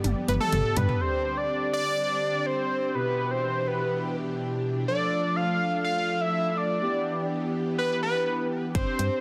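Synth-pop at 124 BPM in 4/4, this short excerpt from a longer piece carries a melancholic yet driving mood. It opens with a drum fill from a deep house kit of hi-hat, kick and toms, its deep kick and dark hats joined by a punchy, round FM bass; both drop out by 1.0 seconds and return only briefly near 8.8 seconds. Throughout, a fat, detuned analog lead with a sub octave and vibrato carries the melody up front, touched with delay. Beneath it, a mellow synth brass with a filter sweep and chorus fills in the accompaniment, while a vintage string machine voiced as violas holds slow-attack sustained chords with ensemble chorus. The harmony moves from G through Gsus4 to Em7 and Dm/F before returning to Em7, all set in a moderate plate reverb within a dense, heavily limited modern master.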